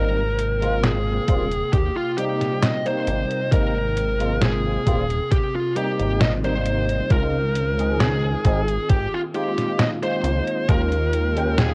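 Worn cassette tape with warbly pitch drift and light digital ambience colors this faded, nostalgic vaporwave excerpt at a slow 67 BPM in Ab major, moving from Abmaj9 to Dbmaj9 at 7.1 seconds and to Eb9sus4 at 10.7 seconds. A dark, high-gain lead guitar carries the melody up front through distortion and tape echo, over a bell-like tine electric piano with ensemble chorus and a lo-fi, warbling pad of slow-attack, long-release chords in the background. A glossy, nasal chorused synth bass with tube saturation sits up front beside a detuned 8-bit drum machine's fat snare and hi-hat, and a thumpy electronic kick enters at 1.3 seconds.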